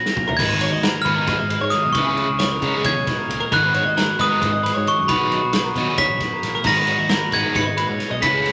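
A sparkling, bell-like glockenspiel played with brass mallets carries the melody up front in this playful, bright excerpt of math rock and midwest emo, moving in a straight 7/8 at 268 BPM in eighths over chords that cycle through G#m7, C#m7 and Bmaj7. Two clean, picked twelve-string electric guitars fill out the harmony, one twangy and compressed on accompaniment, the other warmer and set in the background with arpeggios, while a warm picked electric bass anchors the low end. A distant, roomy indie drum kit with a punchy kick opens on a short fill before a double-tracked overdriven guitar riff joins at 0.4 seconds, all sitting in a moderate large studio reverb.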